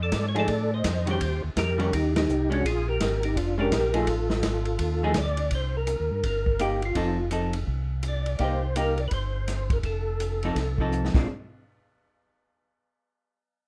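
A percussive tonewheel organ carries the melody with a round, third-harmonic bite through chorus vibrato and a slow rotary speaker, while a second, mellow tonewheel organ plays the bass through the same swirl in this greasy, bluesy soul jazz organ trio excerpt at 167 BPM with a swung feel. A clean, picked hollow-body jazz guitar accompanies underneath, and an acoustic drum kit with dark cymbals and a boomy kick keeps a smooth, rolled-off groove in a small room. The band hits a shared accent at 2.1 seconds, shifts from the opening F7#9 blues changes into a Cm7 to F7 passage at 5.5 seconds, and closes with a drum fill at 10.9 seconds.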